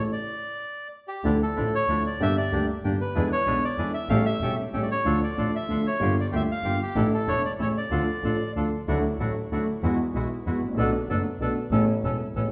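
A reedy, up-front bandoneon carries the melody of this tense, dramatic tango excerpt in a rubato 3/4 until 8.5 seconds, over a warm concert grand piano with deep bass and long sustain and a dark, bowed double bass with vibrato and portamento; after a brief stop, a second, bright and airy bandoneon adds stabs from 1.2 seconds, the harmony turns to major at 8.9 seconds, and the live band sounds in a wet stone room.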